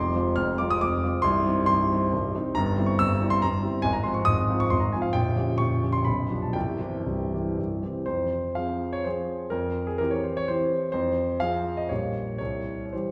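A solo concert grand piano, intimate and natural with deep bass, long sustain and audible action noise, carries this capricious, nostalgic romantic dance in 3/4 and F minor, its dotted rhythms pulled about with rubato between 110 and 144 BPM. Cut from a longer piece, it ranges from Bb0 to F6 and shifts into a new section at 8.1 seconds, where the harmony circles back to F minor before settling on C. A wet recital-hall reverb places the listener further back in the room.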